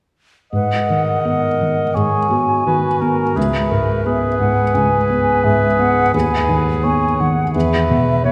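A felt-muted upright piano sits up front in a wet concert hall, its dark, intimate tone carrying audible action noise from the thick felt, while the hall's long reverb blooms around every part. This short excerpt from a longer cinematic film score moves in a free, rubato 4/4 with a longing, moving mood. From 0.5 to 8.3 seconds the piano holds the low accompaniment, and three woodwinds share the second line above it: a clear, present clarinet, a mellow cor anglais in classical style, and an airy silver concert flute played with vibrato and a soft attack, the flute sitting highest. The harmony drifts from G#m7 to C#m7, returns to G#m7 over D#, and turns to E at 7.5 seconds. The blend of the winds over the hushed piano gives the passage an expressive, tender ache.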